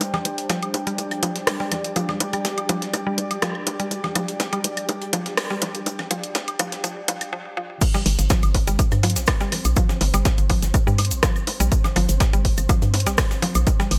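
Minimal techno with a clinical, sparse mood, this excerpt builds through a filter sweep on the synth arpeggio over a tape-warm analog drum machine, a gritty, pitched-up sampler-style breakbeat kit in the background, overdriven bongos, congas and woodblock with delay, a woody, bright mallet-like synth pluck riff with chorus, a flickering grainy texture and an airy, breathy pad that stops at 7.3 s for a brief break, then drops at 7.8 s into an up-front punchy electronic kick and a background cabasa, joined at 8.1 s by a hollow, bouncy, sidechain-pumped FM bass with tube saturation.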